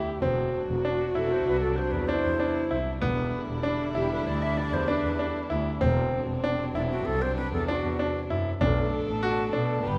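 Hypnotic and pensive, this contemporary chamber piece in 9/8, cut from a longer work, sets bright, polished baby grand piano arpeggios and a clear, bowed double bass up front over a distant, sul tasto string section holding soft, floating chords, while a dark, woody viola sings a second line with vibrato and portamento, a deep frame drum played with soft hands murmurs very quietly from 0.2 seconds, and a breathy wooden flute enters at 1.2 seconds with a mellow, tongued, unsteady melody, all in light reverb as the harmony moves between D7/E and Em7 before shifting to Bm7 at 8.6 seconds.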